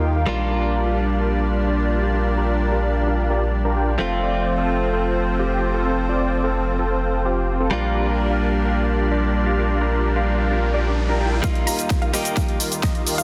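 Festival progressive house at 129 BPM in Bb major, triumphant and euphoric, this cut opens with huge, bright detuned supersaw chords carrying the riff through a low-pass filter and digital delay, over a slow-blooming chorused pad, a clean, scooped direct-recorded electric guitar with delay, and a deep, saturated sine sub bass, all pumping to the sidechain. A background riser climbs from 9.9 seconds into a build-up at 11.4 seconds, where a punchy overdriven kick and a big-room kit with a huge snare, hi-hat, rim click and shaker fill up front, while a detuned pluck arpeggiates in the background. The dense, heavily limited master sits in a lush hall reverb.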